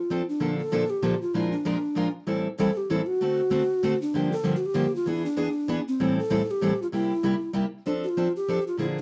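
Swinging at a brisk 194 BPM in 3/4, this playful jazz waltz in F major is a short clip from a longer piece, moving through a chain of seventh chords before settling on F6 at 7.8 seconds. A breathy bass ocarina carries the melody up front, its clay tone marked by vibrato, a crisp attack and lifted highs. A picked steel-string acoustic guitar accompanies from 0.1 seconds with a concert sound and audible finger squeak, both parts set in moderate studio reverb within a dark, warm production.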